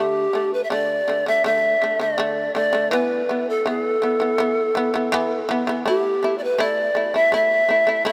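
Mongolian traditional music in a proud, vast mood, set at a steady 82 BPM in 4/4 within the D zhi mode. A polished, airy pan flute carries the melody up front, its tongued notes touched with chiff and vibrato, while a powerful, buzzing shamisen plays plectrum-plucked arpeggios beneath it, both sounding throughout the 8.1-second passage. A huge ambient reverb with a long 7.6-second tail gives the pair a sense of open space.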